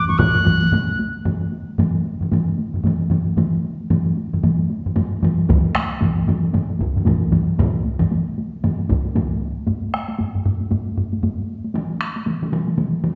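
Heavy-sticked taiko drums dominate this powerful, driving fragment of Japanese traditional ensemble drumming, cut from a longer piece and gathering speed throughout its thirteen seconds. It opens with a brief, pure-toned wooden piccolo line, close-miked and soft in attack, that sounds only for the first second as the drums enter beneath it. Two solo taiko parts sit close and dry, one of them pushed up front, while a full taiko ensemble in a small room carries the weight alongside them. A second ensemble part, compressed and saturated, adds grit, appearing in a short burst at the start and then again from 5.5 to 9.3 seconds. The rhythm carries a swung sixteenth-note lilt in common time, and a church-like hall reverb gives the whole recording a resonant, spacious tail.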